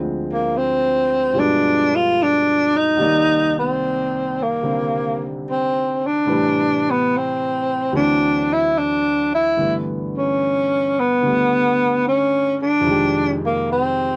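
Intimate, late-night swung jazz in which a woody upright piano, with audible action noise and long sustain, accompanies through rich extended chords while a breathy tenor saxophone enters at 0.3 s to carry a mellow, whispered subtone melody with scooped notes and vibrato, captured in a dry, close 1970s-style studio sound.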